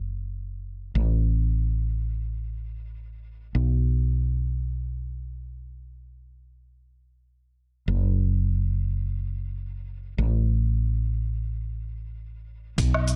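Sunset chillout in free time with a warm, relaxed mood, carried almost entirely by an up-front, woody fretless electric bass, round, punchy and hollow-bodied, moving low between F#1 and B1 in a dark, warm production with little reverb, until at 12.8 s a gritty, thumpy electronic kick sits back in the mix alongside a brief, filtered burst of sampler-style hi-hat, cabasa and woodblock, all re-recorded in a large room, just before this excerpt cuts off at 13.2 s.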